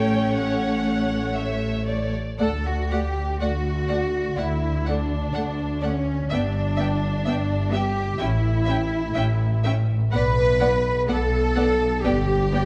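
Classical music for string orchestra: a lyrical, serene slow romantic movement in D major, drifting with rubato at about 58-64 BPM in 4/4, cut from a longer piece. The violins carry a smooth, lush bowed melody with vibrato, a second violin line sits in the background, and the violas add rich accompaniment. Cellos and double basses, the latter with light vibrato and a distant tone, hold the bass up front beneath harmony that moves from A through D and G back to A before a chordless moment at 10.1 seconds, all set in a dark production with moderate scoring-stage reverb.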